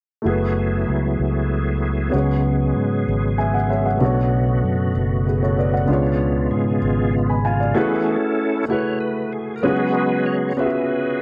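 Soulful and solemn, this gospel passage in a straight 6/8 opens with an intimate grand piano accompaniment, its action noise audible, beneath reedy, bright tonewheel organ chords carrying key click, chorus vibrato and a slow rotary speaker, while a round, punchy fingered electric bass sits dark and up front. The harmony moves through F#m11, C#7sus4, Bm9 and C#7b9 before the bass drops out at 7.7 seconds and the organ takes a solo from 7.8 seconds over the piano. The dry, close sound has a 1970s studio character, and the clip is cut from a longer piece.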